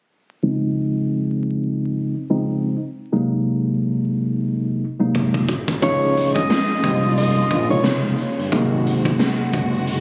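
Nostalgic and warm, this boom-bap hip-hop excerpt at 89 BPM in Db major opens with a mellow, cassette-tinged tine electric piano under a filter sweep over Dbmaj7 and Ab7 chords; a gritty, boomy garage drum kit arrives with a fill at 5.1 seconds, and at 5.8 seconds a breathy, whispered tenor saxophone with digital delay, a fat, detuned analog bass and a distant bowed string section join, framed by small room ambience, club reverb and vinyl crackle as if caught on a phone.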